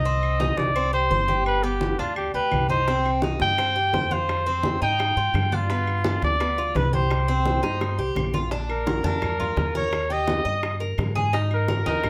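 A vintage-toned trumpet carries the melody up front with vibrato in this danceable, warm Cuban son and guajira cut from a longer piece, moving at a brisk 170 BPM in straight 4/4 in C minor. Beneath it, a bright, metallic Cuban tres picks arpeggios on double strings, some octave-doubled, while a dark, thumpy upright bass with gut strings plays pizzicato. Low-tuned congas with a thick skin sound distant in a large room, joined almost at once by woody claves in the background. Round, softly struck bongos enter at 2.9 seconds, sitting in the background in a live room. A drum fill at 7.6 seconds leads into a new section at 8.5 seconds, where the harmony shifts from its minor-key progression toward Bb, Eb and Absus2. Light reverb gives the whole ensemble a sense of space.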